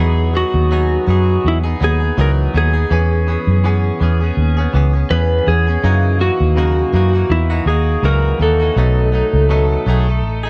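A clean lap steel with a dark tone and a subtle chorus carries a lonely, wistful bedroom-pop melody from the start, over a twangy, direct-recorded electric guitar drenched in lush chorus and warbly pitch drift and a round, punchy muted bass sitting up front, the trio moving at a lightly swung 82 BPM through Emaj9, F#6 at 5.8 seconds and B13 at 8.8 seconds in this short fragment, with moderate reverb and a warm production.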